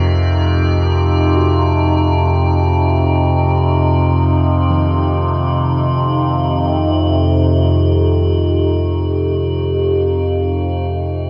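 Ambient music in free time, ominous and vast, this short excerpt from a longer piece opens on a Cm add11 chord that settles to plain C minor at 2.1 seconds. Up front sits an overtone-sweeping drone, low between F2 and C3, its sawtooth-and-sine tone resonant and evolving as its overtones move, with a slow attack, long sustain, chorus and its own reverb. Above it hovers a metallic, inharmonic drone on Eb4, an eerie, warbling FM sound with a vintage, wave-folded edge, also slow to bloom, chorused and reverberant. Very quiet gamelan-type bossed gongs trace arpeggios from F2 to Bb4, their bronze tone round, brilliant and beating, until they stop at 11.0 seconds. The whole is bathed in a huge, wet ambient reverb, and a fade-out begins at 7.7 seconds.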